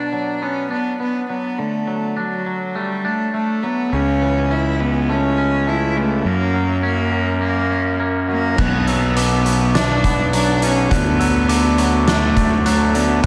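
Cinematic and cathartic, this post-rock passage, cut from a longer piece, opens with a clear, earthy bowed cello carrying the melody with light vibrato, over clean, twangy arpeggios from a fingered electric guitar touched with subtle chorus, both trailing analog delay. At 3.9 seconds an overdriven, fuzz-laden fingered bass arrives up front, punchy and amped, anchoring the low end beneath the minor-key chord changes. At 8.6 seconds the music opens up as an oversized, low-tuned drum kit crashes in with a fat snare, a punchy kick and dark cymbals, its gritty, saturated sound captured in a bright stone room. At the same moment a glockenspiel struck with rubber mallets adds mellow, bell-like arpeggios that ring softly in the background through slapback echo and analog delay. A lush hall reverb wraps the whole ensemble, giving it a big arena sound.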